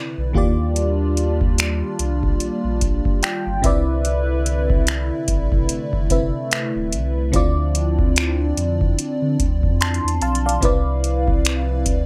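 Tender and smooth, this brief contemporary R&B excerpt at 73 BPM in C major swings gently in 4/4 as a lush, dreamy FM electric piano with chorus and phaser plays a fill from 2.8 to 4.0 seconds over a hollow, flute-like pad, a round sine sub bass entering at 0.2 seconds, and a booming analog drum machine with deep kick, metallic hats and finger snaps arriving at 0.3 seconds, all moving through Ebmaj9, Cmaj9 and Dm7 in a dry, close sound.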